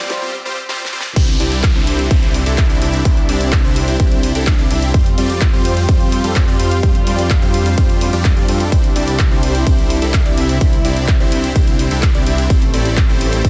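A punchy, up-front electronic kick, layered and re-recorded in a small room, lands at 1.2 seconds and drives this triumphant, euphoric stretch of festival progressive house at 127 BPM in C major. A short build-up with a drum fill on the big-room dance kit, with its huge snare, handclaps, hi-hat, ride and crash, gives way to the drop. At that moment a thick, saturated detuned saw bass with chorus arrives, pumping against the kick. Over it, bright, lush supersaw chords carry the riff through digital delay and a moving notch, cycling from Fsus2 and Cadd9 toward Am7. Dark chamber strings, bowed sul tasto with light vibrato and a soft attack, hold sustained chords in the background, pumping with the sidechain like the supersaws and bass. An electronic riser, swell and downlifter sit behind the mix until 4.9 seconds. The dense, heavily limited master is dry, and this cut from a longer piece feels like a full-tilt festival peak.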